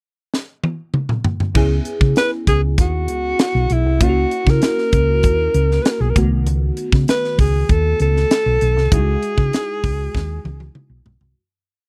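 Bittersweet and nocturnal, this polished 1980s jazz-funk pop piece moves at 98 BPM in a straight 4/4 in C# minor, with a close, dry studio sound touched by light reverb. A crisp fusion drum kit opens with a fill across the pickup bar, then settles into a crisp sixteenth-note groove, its high-tuned snare and punchy kick sitting up front. At 1.5 seconds a dark, round hollow-body electric bass enters with an agile syncopated line full of chromatic approach notes, alongside a sparkling, bell-like FM electric piano holding drop2 chords with grace notes, colored by phaser and chorus. From 2.2 seconds a breathy alto saxophone carries the melody in intimate, whispered song phrases, with subtone, vibrato and scooped notes, close-miked and up front. The verse moves from C#m7 through F#7/C# and B7 to a lingering Emaj9/C# as the piece fades out, with a final drum fill closing it at 11.4 seconds.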